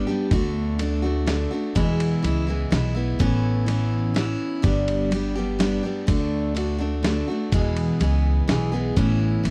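Honky-tonk and classic country in a straight 3/4, nostalgic and sunny, with a bright, full-bodied picked dreadnought acoustic guitar up front that opens alone before an upright bass and a dusty sampler-style drum kit join at 0.3 seconds. The pizzicato bass is woody and thumpy, while the compressed, gritty kit pairs a thumpy kick with a medium-tuned snare and ride cymbal. Moving through D, E, Aadd9 and G, the dry, close 1970s-style studio sound keeps this short excerpt intimate.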